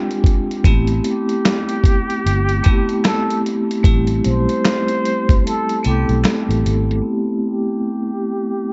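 A swung 75 BPM groove in 4/4 drives this nostalgic, melancholic lo-fi hip hop excerpt in A minor, where a gritty, compressed sampler-style drum kit with a thumpy kick and a round, punchy, foam-muted electric bass sit up front beside a bright, ringing hard-mallet vibraphone colored by cassette tape, while a breathy, distant plunger-muted trumpet with analog delay carries the scooped, whispered jazz melody from 1.1 seconds, very quiet finger snaps add a close human touch, the kick drops out at 5.4 seconds, and a filter sweep closes the cut from 7.0 seconds.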